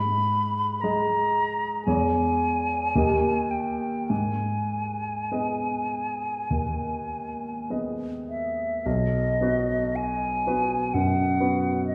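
Rubato phrasing pulls at a slow 4/4 pulse that moves between 49 and 65 BPM in this elegiac, solemn romantic duo for flute and grand piano, cut from a longer piece. A pure, hollow concert flute, close-miked with vibrato and tongued notes, carries the melody between D#5 and B5. Beneath it, a clear, natural grand piano with short sustain supplies the accompaniment from B1 to D#5, and both instruments sit up front for the full 11.9 seconds. The harmony rests in G# minor, passing through C#m/E and D# before returning to G#m, then brightens into B major at 8.9 s. A wet recital hall reverb places the duo further back in the room, lending the sombre lines a spacious, lingering air.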